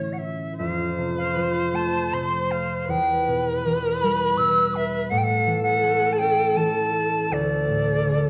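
In an uneven, rubato lilt of three, this wistful, pastoral 8.3-second excerpt from a longer Celtic slow air, tuned to A4 = 436 Hz, sets an airy, bright wooden flute carrying the tongued, expressive melody with vibrato above a close, bowed solo viola adding a soft-attack second line with portamento, while a concert harp, plucked with the thumb, rings out a warm accompaniment, all in a moderate recital-hall reverb and a dark production.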